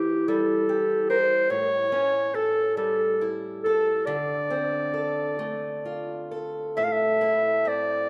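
The rhythm moves in a rubato 6/8, with the pulse drifting around 43-49 beats per minute counted in dotted quarters, giving this Celtic slow air a haunting, longing character. A clarinet carries the melody in a classical style, its tone warm with a smooth top, sitting up front between G4 and F5. A picked, old ladder-braced acoustic guitar accompanies from A2 to Bb4, its warm, boxy body also placed close, set somewhat beneath the clarinet. The harmony passes from Edim to A7 and then Dm7, before a new passage begins at 6.8 seconds on Am and runs until the cut at 8.1 seconds. A moderate recital hall reverb with a 1.6 second decay surrounds both instruments, lossy compression artefacts color the sound, and the tuning sits slightly low at A4 = 439 Hz.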